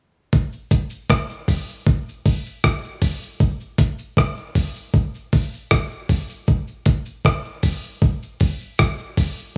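A gritty, compressed sampler-style drum kit sits up front with thumpy kick, hi-hat and rim click in this hypnotic, meditative reggae excerpt at 78 BPM in a straight 4/4, alongside a faint, close and dry cabasa with a tube-shaker and group-handclap character, all in a dry studio ambience with little reverb.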